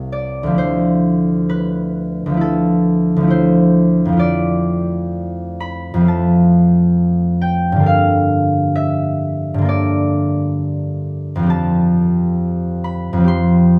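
Graceful and dreamy, this brief classical excerpt for solo concert harp unfolds with a rubato feel, its fingerpicked, ringing tone sitting close and up front in a dry, detailed sound as lush extended chords drift from C6 through Dm9 and Gm9 before settling on Fadd9 near 11.5 seconds.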